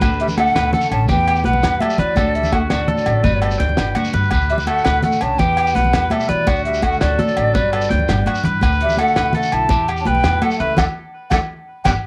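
Carefree and danceable, this highlife guitar band excerpt moves at 112 BPM in a straight 12/8, in D major, cycling through D, Emadd9 and Gmaj7. A mellow, hollow silver concert flute carries the close-miked, tongued melody with vibrato from 0.2 s, while a growling tenor saxophone, breathy and raspy with scooped notes, sits in the background on a jazz-style second line. Underneath, a slightly broken-up, twangy electric guitar picks arpeggios, a bright, clean electric guitar adds background accompaniment, and a woody, dark upright bass is played pizzicato. The cloth-damped, thuddy drum kit has a fat snare, tight kick and rolled-off top with a cassette tape colour, joined by ringing, saturated agogo bells, high-tuned congas played with soft hands, and a grainy, distant shekere. The home recording on cassette has a light reverb, and the band lands a shared accent at 10.8 s as the passage closes on D.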